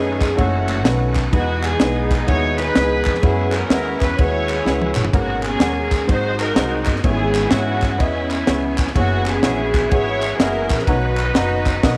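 A light, small-room reverb gives this uptempo gospel passage, cut from a longer piece, an intimate, close sound with a reverent, uplifting mood at 126 BPM in 4/4 and a swung eighth-note feel. Up front, a bowed studio string section carries the melody with a soft-attack, sul tasto tone that feels pure and floating, touched by a slapback echo. A clear upright piano with a smooth, vintage character and long sustain supplies the accompaniment, while a very quiet tonewheel organ holds bright, shouting sustained chords colored by key click, chorus vibrato and a slow rotary speaker. A pizzicato upright bass on steel strings adds a woody, thumpy low end, and from 0.2 seconds a dry, tight funk drum kit with a high-tuned snare sits up front alongside distant, crisp group handclaps. A drum fill at 4.7 seconds lands on G#m11, as the harmony moves through lush seventh, ninth and eleventh chords such as F#m7, Emaj7, G#m11 and Bmaj9.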